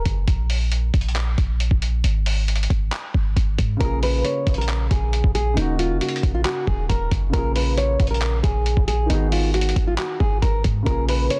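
Trap-flavored hip hop with a menacing, eerie mood, set to a half-time feel and cut from a longer piece. A boomy, sine-like 808-style bass with a fast attack and decaying tail sits up front from the start, beside a muffled, tape-warm sampler-style drum kit of thumpy kick, hi-hat and handclaps that sounds compressed and re-recorded in a small room. A filter sweep runs through the opening until 3.8 seconds. A thumb-plucked nylon-string guitar, classical in tone with audible finger squeak and a low-pass filter, sounds briefly at the very start and then returns at 3.8 seconds to take the melody up front, while a dark, mellow concert grand piano with short sustain and a vintage, smooth character enters at that point with low-passed accompaniment beneath it. The chords move through Bbm7, Ebm7, Bbm7 and Abm7 before settling back on Bbm7, all inside a dense, heavily limited modern master with digital ambience.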